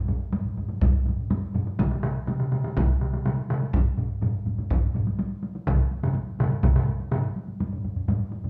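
Driving straight 4/4 pulses at 124 BPM through this short cut from a longer Japanese traditional taiko drum ensemble piece, and the mood is powerful throughout. Two taiko ensemble parts sound from the first moment to about 8.5 seconds, one struck with hard sticks and the other with heavy sticks and placed up front in the mix, both carrying the acoustic ring of a live room. A third taiko ensemble part joins at 0.8 seconds, its hard-stick hits compressed and saturated for a dense, forceful edge. A solo taiko drum line enters at 1.8 seconds, sitting up front with a vintage, band-limited tone that sets it apart from the fuller ensemble. The whole performance is captured as a band playing live in one room, bathed in a large, wet studio reverb that lends the drums a booming sense of space.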